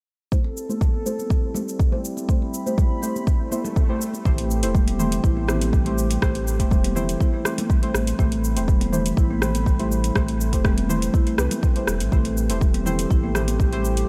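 A warbling, detuned analog pad and a dark, full-bodied chord stab open together at 0.3 s on an Am7 chord, both pumping against a deep, tape-warm electronic kick that sits up front, while an afro-pop kit adds metallic hi-hats, rim clicks, shaker and toms. This is afro house at 122 BPM in A minor, with a warm, spiritual mood, and soft-handed congas sit very quietly beneath the groove. The chord stab carries a filter sweep through its opening seconds, trailing a diffuse ambient delay, and a faint electronic swell rises in the background from 3.5 to 4.3 s. At 4.3 s the music opens up as a round, sine-like sub bass arrives and a woody marimba played with soft mallets begins arpeggios in the background, its tone shaped by a low-pass filter sweep and a diffuse ambient delay. The pad, stab, marimba and bass all breathe with sidechain pumping, and light reverb gives the whole mix a gentle sense of space as the excerpt continues past 14 s.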